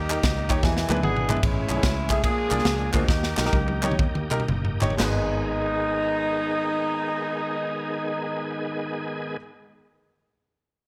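A swung 4/4 pulse drives this uptempo gospel passage in G# minor, moving between 112 and 150 BPM before slowing down through the middle stretch, with a solemn yet fervent mood. The up-front horn section carries the melody with a smooth top and jazz-style ensemble voicing, while a natural-sounding baby grand piano accompanies and adds a fill near the start. A bright, shouting tonewheel organ holds sustained chords with key click, light overdrive, chorus vibrato and a slow rotary speaker, and contributes its own fill alongside a drum fill. Beneath them, a dark, round, foam-muted fingered electric bass anchors the harmony as it passes through chords such as E7, Amaj7 and A#7 before settling on G#m at 5.0 seconds. The crisp, punchy acoustic drum kit sits forward with crash, ride, snare, kick and toms, joined by hollow, close group handclaps, and they stop around 5.2 and 5.3 seconds respectively, leaving horns, keys and bass to carry the rest in light reverb.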